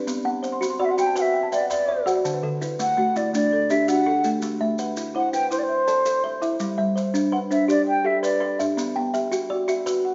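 An airy, softly vibrato wooden flute sings a mellow melody over a hypnotic southern African mbira-style cycle in 12/8, where a woody, thumbnail-plucked kalimba sits up front beside a dark, rustic hardwood marimba that opens with a fill from 0.3 to 2.2 seconds, while grainy maracas rustle beneath, all bathed in a moderate recital hall reverb in this short cut from a longer piece.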